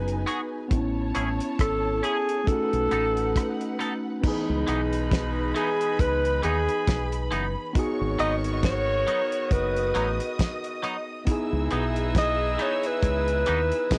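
Bittersweet and longing, this slow lovers rock reggae excerpt in C# minor moves at 68 BPM with a swung 16th feel, as a mellow, scooped alto saxophone with vibrato carries the melody up front through tape echo, shadowed by a soft, bowed studio string section playing sul tasto. A worn, slightly out-of-tune tine electric piano, lightly overdriven, provides accompaniment, while a round, dark dub bass and a dry 70s drum kit with a fat snare and tight kick anchor the groove, and a twangy, clean electric guitar adds chorused stabs. At 4.2 seconds a punchy, bright saxophone section joins as a second line, all under a lo-fi cassette haze with light reverb over chords moving from G#m7 to C#m9.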